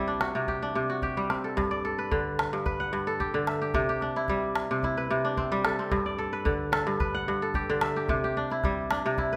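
A ringing, crisp kora opens this flowing clip of West African string music in G major, its fingerpicked arpeggios sitting up front and ranging from low G2 to high F#5 over a straight 4/4 at 110 BPM. A deep calabash joins at 0.2 seconds, keeping percussion underneath with a small-room sound. The harmony moves gently between C and G, and a moderate recital-hall reverb gives the warm kora an airy, resonant setting.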